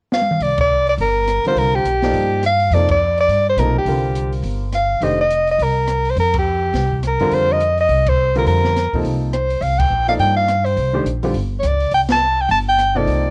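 A light-reverb home cassette recording captures a searching, hypnotic stretch of modal jazz in C dorian at a brisk 208 BPM swing, where a mellow, tape-tinged soprano saxophone with light vibrato and scooped notes carries the melody up front over a woody, thumpy upright bass, a dark, boomy open drum kit that kicks off with a fill, and a clear baby grand piano accompanying from 1.5 s, dropping out at 5.2 s and returning at 7.2 s, while the band hits recurring accents and the harmony moves between C9sus4 and F9sus4.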